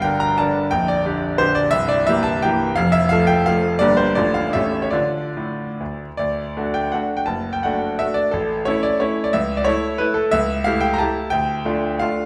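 A brilliant grand piano plays alone from 0.0 to 12.3 seconds in this short romantic classical fragment, cut from a longer piece: a triple-time dance with dotted rhythms, shaped with free, flexible rubato. The mood is capricious and wistful. At 6.2 seconds the music turns from a minor-key opening to a brighter major-key passage, before drawing back toward the minor near the close. The piano sounds intimate and up front, with audible action noise and a long sustain. A wet recital-hall reverberation adds a sense of hearing the performance from further back in the room.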